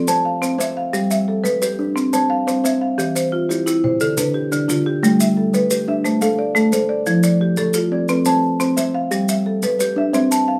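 Marimba and kalimba arpeggios open at once, the marimba's medium-mallet tone up front and mid-forward over the soft, woody fingertip plucks of the kalimba, with close, dry, grainy maracas entering at 0.1 seconds, in a rippling, hypnotic southern African traditional cycle in 12/8 at 118 BPM in C major, moving through C, G, Em, Dm, Am and F in a small room with moderate studio reverb, cut from a longer piece.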